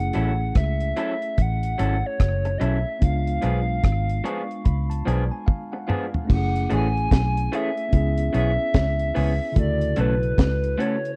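A reedy, warbling FM lead carries the longing melody with chorus and tape echo over a smooth lovers rock reggae groove, supported by a clean tine electric piano that plays a fill from 3.8 to 6.3 seconds, a round, foam-muted fingered bass, lo-fi, slightly broken-up guitar stabs through a small old amp, and a deep reggae drum kit with a high-tuned snare and tight kick that fills from 5.5 seconds, captured as a close 1970s-style studio recording with dry, small-room ambience in this cut from a longer piece.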